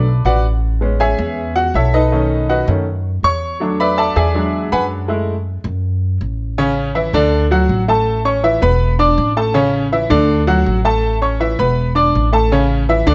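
The recording sits in a light reverb with a mellow top end, and both instruments sound close and up front. It is a joyful, danceable Latin excerpt in A major at 162 BPM in a straight 4/4, cut from a longer piece. A brilliant, slightly worn baby grand piano carries the accompaniment throughout, ranging from C#3 to D6. An acoustic upright bass, played pizzicato on steel strings, gives a woody, thumpy low end from E1 to F#2. For the first 6.6 seconds the piano takes a solo over richer harmony such as Amaj7, B7, E9 and F#m7. After that it settles into a simpler, buoyant cycle of A, D and E5 chords that runs to the end at 13.1 seconds.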